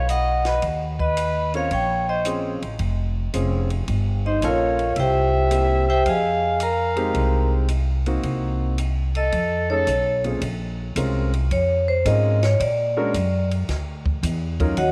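Swinging in 4/4 at 110 BPM, this late-night, cool small-group jazz excerpt in F minor, shifting to Bb minor at 10.4 s, sets a ringing, close-miked vibraphone melody over woody, growly pizzicato upright bass and a compact cocktail drum kit with dark cymbals and a tight kick, while a distant, punchy trumpet with slapback echo carries a second line until 10.2 s, a long-sustaining grand piano comps from 1.5 s, and the vibraphone closes with a solo, all in a moderate spring reverb.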